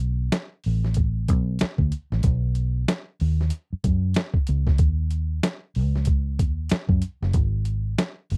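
A dark, round, foam-muted electric bass opens this smooth, sultry neo-soul R&B excerpt at 0.0 seconds, joined at 0.3 seconds by a gritty, pitched-down, compressed sampler-style boom bap kit with a thumpy kick, medium-tuned snare and hi-hat, both up front in a dry, close 1970s-style studio sound with a swung sixteenth-note feel.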